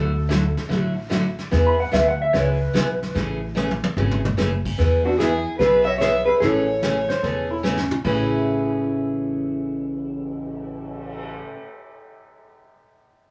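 A swung 147 BPM groove in 4/4 drives this cheerful, down-home western swing excerpt in A major, with a picked, up-front acoustic guitar showing finger squeak, a woody, thumpy pizzicato upright bass and a vintage brush kit with a fat snare, punchy kick and dark cymbals that drops fills at 3.6 and 7.6 seconds. A twangy, clean lap steel opens with slide lines and volume swells, then returns later, while at 5.1 seconds a dark, hollow-body jazz guitar takes the melody up front beside a close, bowed fiddle with light vibrato. The band sounds live in one room with a short, wet studio ambience.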